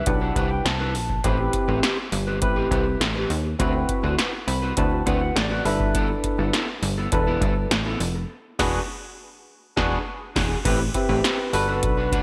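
A straight 4/4 groove at 102 BPM drives this funky, slick early-eighties boogie funk excerpt in A dorian, where a dry, punchy electro drum machine with deep kick, metallic hats and gated reverb sits up front alongside a plucky sawtooth analog bass, while a barky, lightly overdriven tine electric piano with lush chorus adds fills at 0.0 and 4.2 seconds over chords like Cmaj9, D13 and E9, a dark, slightly broken-up picked guitar riff with analog chorus sits lower in the mix, and the band hits accents from 8.3 seconds before a brief closing section, all in a bright 1980s-style digital production with light reverb.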